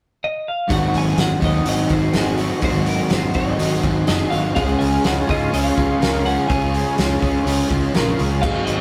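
Dreamy and hazy, this short cut from a longer shoegaze and dream pop rock piece moves at 124 BPM in a straight 4/4, sitting in Ab mixolydian as it shifts from Ab7 to Dbmaj7 at 4.6 seconds. A bright, twangy, compressed twelve-string electric guitar carries the melody from 0.2 seconds. At 0.7 seconds the rest of the band arrives: a hollow-bodied overdriven riff guitar, a warm overdriven electric guitar playing its own riff in the background, a growling, overdriven picked bass, and a loose indie drum kit with a fat snare, punchy kick and dark cymbals, joined by a shimmering fingerpicked twelve-string acoustic playing octave-doubled arpeggios with audible finger squeak and a lush vintage string machine holding slow-attack chords through ensemble chorus, all set in a moderate stone room reverb with a rough rehearsal-room sound.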